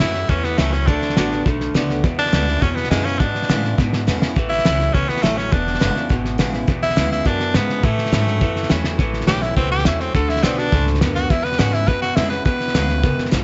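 Rockabilly at a brisk 207 BPM in A major, this upbeat, retro excerpt from a longer piece features a raspy, forceful tenor saxophone up front, carrying the melody with vibrato through plate reverb and analog delay before taking a solo from 9.0 seconds. Beneath it, a twangy, slightly broken-up electric guitar through a small old amp plays a riff, a bright dreadnought acoustic guitar picks an accompaniment in the background, and a woody, thumpy pizzicato upright bass on gut strings holds the low end. A muffled, cloth-damped drum kit with a fat snare and tight kick sits up front in a small, lo-fi room sound, with fills around 3.8 and 8.8 seconds, while the whole mix carries light reverb and a rolled-off top.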